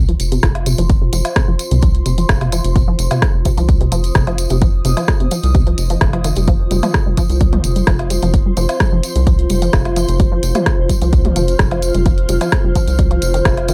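A straight 4/4 pulse at 129 BPM drives this sparse, clinical minimal techno passage cut from a longer piece, where a punchy, up-front electronic kick, a house drum kit of hi-hat and rim click, a close, jingly tambourine, and electronic woodblock and toms from a larger room sit under a rubbery, hollow square bass that pumps to the sidechain, while a squelchy, resonant blip pluck riff glides through a filter sweep with chorus, phaser, tape echo and cassette grit, and a granular cloud pad drifts high above in its own reverb, all captured in a dry, gritty hardware sound.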